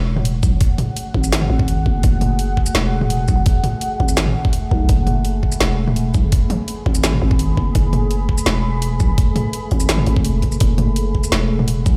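A half-time drum and bass groove at 168 BPM in 4/4 drives this tense, cinematic passage from a longer piece, set in F# minor and resting on a single F#madd9 chord throughout. The drum kit enters at 0.2 seconds with a woody snare, bright hi-hats, shaker and toms, all layered, overdriven and placed up front. An electronic kick joins at 0.4 seconds with a knocking, overdriven punch that sits high in the mix. Beneath the drums, a growling 808-style bass with a buzzy, saturated tone, fast attack and decaying notes holds the low end from E1 to C#2. A deep, moody ambient pad of detuned sawtooth unison and a sine sub octave sustains chords from A3 to B5, shaped by a slow attack, long release, chorus, built-in reverb, a moving notch and sidechain pumping. The whole recording sounds as if played on a big sound system in a bare room, wrapped in large studio reverb.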